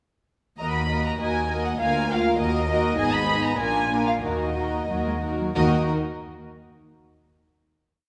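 At 0.6 s the full string body of a symphony orchestra sets out together on a quick, urgent classical-period movement in Eb minor, moving in 2/4 at roughly 90-101 BPM with a restless, rubato feel. A dark chamber violin section carries the melody up front, intimate and close, with light vibrato, a soft sul tasto attack and a smooth top. Beneath it a second violin section adds a pure, floating second line of repeated notes and sustained chords, while a rich viola section fills in the accompaniment in the same way. In the background the cellos sound warm, marking the bass on the beats, holding sustained notes and answering at phrase ends, and a woody, vibrato-laden double bass section doubles that bass line. The brief theme passes through Ebm, Bb7 and Abm before settling on a final chord from 5.6 s, all bathed in a wet scoring-stage reverb.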